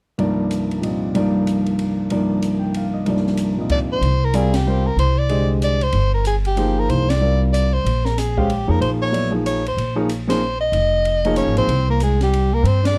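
A bright, breathy soprano saxophone carries the melody up front from 3.7 seconds in this intense, spiritual modal jazz piece in swinging three, over a natural-sounding concert grand piano with deep bass accompanying, a woody pizzicato upright bass entering at 4.0 seconds, and an open acoustic drum kit with a boomy kick and high-tuned snare, while a whispered alto saxophone adds a soft-attacked second line from 11.4 seconds, all set in a moderate club reverb with a dark, warm production.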